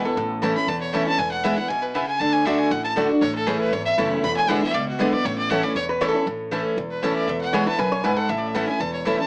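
Bluegrass at a lively, driving 236 BPM in A major, cut from a longer piece, with a clear, biting fiddle up front carrying the melody and a solo through the opening 6.3 seconds, its airy bow and light vibrato close and intense. A bright picked steel-string acoustic guitar with fresh strings and audible finger squeak supplies accompaniment, while a woody double-strung mandolin adds stabs and a growly, thumpy upright bass sits low under the chords moving through A, E, D and E7. A metallic, nasal lap resonator guitar, slide-played with fingerpicks, takes a second line briefly at the start and again from 5.9 seconds, all in a moderate studio reverb with a small-speaker sound.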